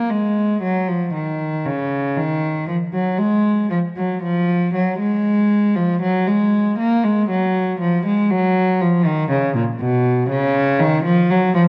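A worn, warbling cassette sound with warbly pitch drift and a moderate stage reverb frames this grave, solemn baroque-style suite movement for unaccompanied cello at 59 BPM in a rubato 4/4, where a single bowed cello with a rich, reedy gut-string period tone sits close and up front, ranging from Bb2 to Bb3 across this brief cut from a longer piece.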